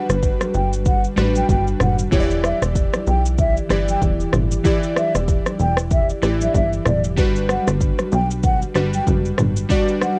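A mellow, hollow concert flute with vibrato and an analog delay carries the melody from the start, over glassy digital keys given chorus, in this sunny, joyful afrobeats excerpt at 95 BPM in G major with a swung sixteenth feel. A punchy, funky analog bass with a sawtooth-edged filter pluck and an up-front electronic afro-pop kit with a deep kick, rim click, shaker, toms and cassette coloring come in at 0.1 seconds, and faint, distant congas in a large room join at 0.4 seconds. The harmony moves from Gmaj7 to Em7 and back to Gmaj7 at 7.2 seconds, with light reverb and a home-cassette character.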